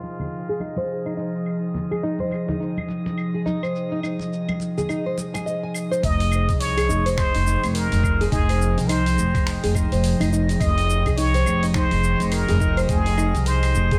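This organic downtempo piece in F minor moves at 105 BPM in 4/4 with a swung sixteenth-note feel, carrying a warm, mystical mood over an Fm7 chord. A warbling, lo-fi tape-like pad holds slow-attack chords with chorus, pumping and shimmer reverb, while a glassy texture of drifting overtones hovers calmly in the background. A thumb-plucked nylon-string guitar plays classical-style arpeggios through digital delay and a filter sweep, and a gritty, dusty sampler-style kit of cabasa, claves, finger snaps and hi-hat ticks along beside hard-hand congas that drop out at 5.4 seconds. A plunger-muted trumpet gives a brief wah-wah phrase until 1.2 seconds, then returns at 6.0 seconds as a vintage jazz-style solo with scooped notes, delay and shimmer reverb. At that point a woody, gut-strung pizzicato upright bass arrives up front with tube saturation and pumping, joined by a thumpy, compressed electronic kick. 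The whole sits in a small room with light reverb and a low-pass filter, cut from a longer piece.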